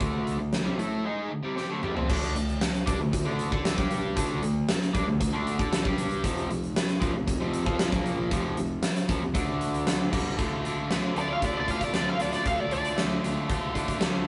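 Classic rock with a driving, swaggering straight feel, cut from a longer piece. A crunchy, bright, double-tracked overdriven guitar riff sits up front from the start, alongside a huge arena drum kit with a fat snare, punchy kick, crash cymbal, hi-hat and toms in an airy, polished big-room sound. Underneath, a fuzz picked electric bass adds a round, overdriven low end in the background. A drum fill at 1.6 seconds marks the first change of section. At 11.2 seconds a bluesy lead guitar, distorted and treated with wah, steps up front for a short solo phrase in a high register. The take has a rough rehearsal-room character, with wet small-room reverb and a dull top end.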